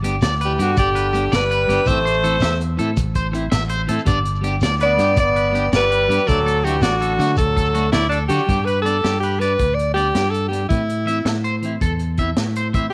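Joyful and carefree, this short highlife guitar band passage moves at 109 BPM in a straight 12/8 in G major, cycling through G, Am and D. An edgy alto saxophone carries the melody up front with punchy, scooped notes and a forceful pop-style voice, entering at 0.5 seconds, while a brilliant trombone with light vibrato plays a second line in the background until about 8.1 seconds. Beneath them, a bright, twangy electric guitar at the edge of break-up picks arpeggios bathed in spring reverb and slapback echo, and a clean, picked electric guitar adds accompaniment through a harmonic tremolo. A round, dark fingered electric bass sits up front, and a crunchy breakbeat drum kit with a high-tuned snare, tight kick and gritty, saturated, rolled-off top drives hi-hat, kick and snare. A grainy, mellow shekere rattles close yet in the background until 8.4 seconds, all set in a small room ambience.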